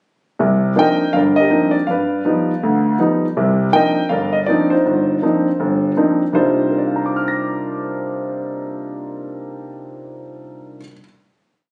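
A brisk swing at 162 BPM in 4/4, with a light swing lilt on the eighth notes, drives this short, complete piece of solo jazz piano in C minor. The mood is late-night and smoky, carried entirely by a warm concert grand that sits up front with an intimate, natural tone, deep bass and audible action noise. A stride accompaniment in the bass hand and close voicings support a motif-based melody built in sentence-like phrases, moving from Cm11 through G7b13 and back to Cm11 across a range from G1 to Bb6. After the opening statement from 0.4 s, a final chord arrives at 6.3 s and holds until 9.3 s, and the piano's part ends at 11.0 s. The sound suggests a phone capturing the player in a club, with light reverb, the room's ambience and compression.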